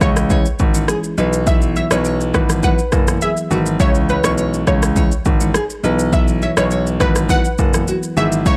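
Sultry and smooth, this short afrobeats passage, cut from a longer piece, moves at 103 BPM in a straight 4/4, circling between C#m and Bsus4 with a tuning of A4 = 441 Hz. A deep house drum kit sits up front, its punchy kick, rim click and shaker given an overdriven, electronic edge. Unusually, a clear concert grand piano carries the bass line in its lowest register, sounding intimate and a little boxy, with audible action noise. A bell-like tine electric piano provides accompaniment in the background as though through built-in speakers, while a round, detuned analog pluck with a sawtooth bite, filter sweep and chorus carries the melody through a tape echo. From 0.3 seconds a fingerpicked nylon-string guitar adds a full-bodied classical riff with fresh strings, finger squeak and its own tape echo, all in a dry, close space.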